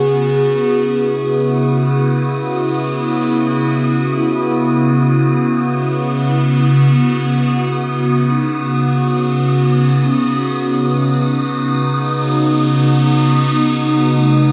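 This ambient excerpt drifts in free time in C# minor, tuned to A4 = 435 Hz, with a reflective, melancholic mood. A bright, full-bodied wavetable pad sits up front, holding sustained chords that morph and evolve through detuning, a moving notch and a phaser. The pad moves from C#m11 to B/C# at 7.7 seconds. Behind it, a mellow vibraphone played with soft mallets spins ringing, metallic arpeggios with a slow motor vibrato and tape echo, and it fades out across the whole clip. From 0.1 seconds, an airy, breathy wind-like noise texture hovers high on a single tuned pitch, adding a dark haze. A lush hall reverb with a 2.8-second decay bathes the dark, warm production.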